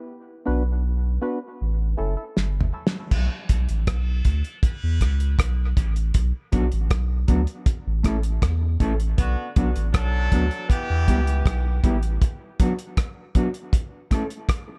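A dark, reverberant production carries this hypnotic, heavy dub reggae in B minor at 79 BPM, where hollow, chorused organ stabs soaked in dub echo open over a round, deep sub bass; a cloth-damped, thuddy drum kit with a tight kick enters with a fill at 2.4 seconds, a distant, roomy horn section with light vibrato takes a second line from 3.1 seconds, and a clean, fingered electric guitar adds echoing accompaniment, with a filter sweep running through the opening and the bass dropping out for a closing break at 12.2 seconds.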